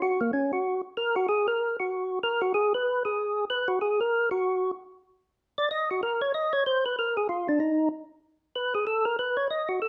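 Jazz at a brisk 190 BPM in 4/4, swung on the eighth notes, with a late-night, smoky mood. This short cut from a longer piece features a percussive tonewheel organ playing solo from 0.0 to 9.9 seconds, ranging from Bb3 to Eb5. Its tone is fat and lightly overdriven, with a third-harmonic percussion attack and vibrato colouring each note. A slow rotary speaker adds gentle movement to the organ, which sits up front in the mix. A moderate studio reverb gives the sound a sense of room around the instrument.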